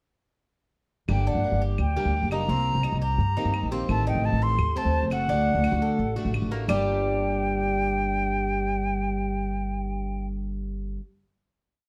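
A short, complete Cuban son and guajira piece opens at 1.1 seconds with flute, guitar, upright bass and claves together, setting a sultry, danceable mood in a dark production with light reverb. Up front, the silver concert flute carries an airy, tongued melody built from call phrases, played with vibrato and a slightly unsteady feel, while the pizzicato upright bass plays a thumpy, syncopated figure on steel strings. The claves sit close and dry in the background, woody in tone, keeping a two-bar time line, and the plugged-in acoustic guitar strums boxy swing chords with muted slaps on fresh strings. The Cuban tres joins a moment later with a bright, metallic arpeggiated guajeo on its double strings, some of them octave-doubled. The verse moves through Gm, Cm7, Adim and D before settling on a final Gm chord at 6.7 seconds, as the claves fall away.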